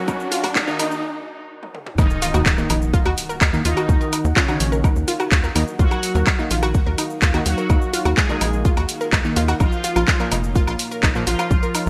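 A riser and filter sweep open this cinematic, melancholic melodic techno excerpt at 126 BPM in Eb minor, building for 2 seconds through a brief break and a drum fill before the drop lands with a background impact. From the opening moments a punchy, up-front electronic kick and a tape-tinged house kit of handclaps, hi-hat, shaker, toms and woodblock, dressed in gated reverb, drive a straight 4/4 groove under a tight, sawtooth-and-square sequencer bass that pumps against the kick. A juicy, resonant polysynth carries the melody, while a round, detuned analog pluck spins arpeggios, both treated with chorus, sidechain pumping and digital delay. Brassy synth stabs sit further back with the same effects, and a deep, moody ambient pad enters at 1.2 seconds, very quiet and dark beneath the rest. The harmony rests on Eb minor before moving to Bb minor at 9.6 seconds, all framed by bright, 1980s-style digital production and light reverb.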